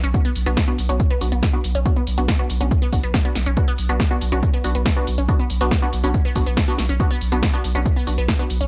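A straight 4/4 pulse at 140 BPM drives this dark, hypnotic peak-time techno in B minor, cut from a longer piece and resting on a single Bm chord. A punchy, tape-warmed electronic kick sits up front, while an analog drum machine adds hi-hat and snare with pumping sidechain on the hats and cymbals, and a deep, thick sine sub bass on B1 pumps beneath, saturated and sustained. Above them, a juicy, squelchy blip pluck riff with a moving notch, phaser and analog delay plays between B3 and C#4, and muted, detuned dub chord stabs pulse through phaser and tape echo, all in a dry, gritty hardware recording with a cassette tape character.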